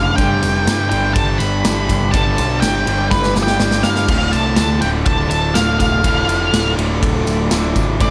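Classic rock at 123 BPM in D minor, this driving, gritty excerpt puts a dark, fuzzy octave-fuzz lead guitar melody with slapback echo up front over a punchy, fuzzed electric bass and a big, natural rock drum kit with bright cymbals that enters at 0.2 s and plays a fill at 3.1 s, while three overdriven rhythm guitars (one cranked stack, one lo-fi double-tracked garage tone, one warm) play riffs in the background, a jingly tambourine sits very quiet, and a lightly overdriven tonewheel organ with key click and slow rotary swirl joins on sustained chords at 4.1 s as the harmony moves from G to Dm, all in light reverb.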